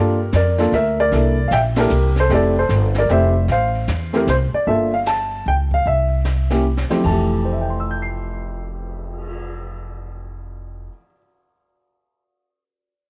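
Relaxed and warm, this short jazz piano trio excerpt swings in 3/4 at 152 BPM in F major, with a mellow, dark baby grand carrying the melody up front over a woody pizzicato upright bass and a softly placed brush kit of dark cymbals, high-tuned snare and boomy kick, all in light reverb, as chords move from Gm9 through C13 to Fmaj9, a band accent lands at 1.7 seconds and a drum fill from 6.6 seconds leads back to Fmaj9 at 7.0 seconds.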